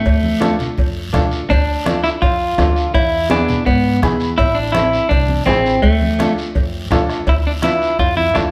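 A clean, picked electric guitar opens this cumbia excerpt, carrying the melody up front with a compressed tone and a touch of spring reverb. Almost at once, a woody, thumpy upright bass joins, played pizzicato on steel strings. With it come a soft-beatered bombo and thick-skinned congas in the background, a raspy guiro, and a very quiet, ringing cowbell and timbales with a vintage, band-limited edge. At 0.4 seconds, a clear but worn upright piano, slightly detuned, adds accompaniment. The harmony moves from Dm to E7, then Am and back to Dm, giving the straight four-beat groove a driving, fiery Latin character. The band sits in a large studio reverb and is heard from further back in the room, which lends the sound a wet sheen.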